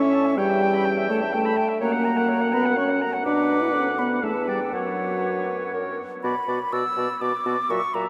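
Moving briskly in 3/4 at 123 BPM with a straight feel, this urgent, restless classical-period movement for wind quintet in B minor is a short cut from a longer piece, its five players sounding together throughout the 8.1 seconds. The hollow, airy concert flute carries the melody with vibrato and a crisp attack, while a clear, distant oboe adds a second line with light vibrato, the clarinet sits in the background as accompaniment, a mellow French horn stands up front with a soft attack, and a roomy bassoon supplies the bass. A huge, wet reverb places the ensemble in a vast, echoing space, as harmonies moving from C#m7b5/E through F#, Bm and Em to an F#sus4 and F# resolve onto Bm when a new section begins at 6.2 seconds.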